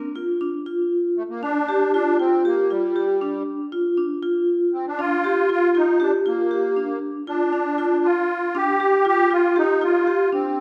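A vibraphone played with medium mallets opens the recording with ringing, metallic arpeggios under a fast motor vibrato, setting a playful chamber-music mood in 7/8 at 236 BPM (counted in eighths) in Bb major, resting on a rootless Bb6 chord. At 1.2 s a reedy musette accordion enters up front with the melody, its wet musette tuning giving a shimmering, dark, smooth tone. Both sit in a reverberant recital-hall space through this short passage, which is cut from a longer piece.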